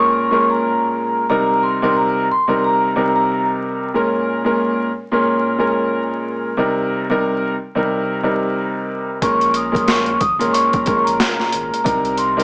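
Swung sixteenths in 4/4 give this reflective, moody boom-bap excerpt its loose feel: a warm, smooth, vintage grand piano with cassette-tape coloring sits up front, alternating between Bbm7 and Cm7, while a metallic, ringing vibraphone with slow motor vibrato carries the melody from 0.0 to 3.5 seconds. At 9.2 seconds the vibraphone returns alongside a gritty, overdriven, pitched-down sampler drum kit, with a thumpy kick and high-tuned snare, and a deep, round sine sub bass that stays in the background. Light reverb, vinyl crackle and a small-speaker tone lend the whole a dusty, lo-fi character.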